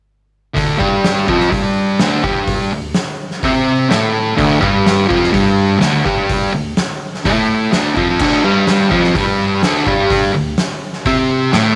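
Raw and swaggering, this short garage rock excerpt, cut from a longer piece, drives along at 126 BPM in a straight 4/4. A distorted, double-tracked fuzz guitar carries the riff from 0.5 seconds, sitting up front with a compressed, picked bite and ranging from D2 to C4 over a D5 power chord. An oversized, low-tuned acoustic drum kit arrives at 0.6 seconds with a boomy kick, fat snare, hi-hat, crash and dark cymbals, its big, pumping room sound saturated and gritty. The drums sit a little lower in level than the guitar, yet both parts feel close and in the listener's face. Light reverb, studio ambience and a faint mains hum round out the unpolished sound until the guitar stops at 11.8 seconds.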